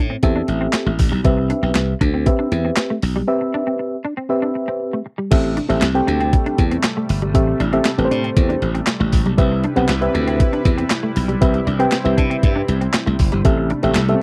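Early-eighties boogie funk at 118 BPM in A minor, this late-night, danceable cut from a longer piece moves between Am7 and Cmaj7 chords over a straight 4/4 feel. A crisp 8-bit digital drum machine sits up front with a thumpy kick, medium-tuned snare, handclaps, hi-hat and crash cymbal, its tape-warm, sampler-style sound carrying a small-room character. A glassy slap bass, bright, growly and punchy, drives the low end alongside a mellow FM electric piano whose soft, round, warbling tone carries a chorus effect and a faint noise layer. A clean, compressed semi-hollow electric guitar plays a fingered riff, treated with ensemble chorus and sitting further back in the mix. After a break from 3.3 to 5.3 seconds, a shimmering pulse-width pad enters at 5.3 seconds with slow-attack sustained chords, its detuned, sub-octave retro glow adding a second section's lift. The recording is dry and close, with little reverb and a 1970s-style studio intimacy.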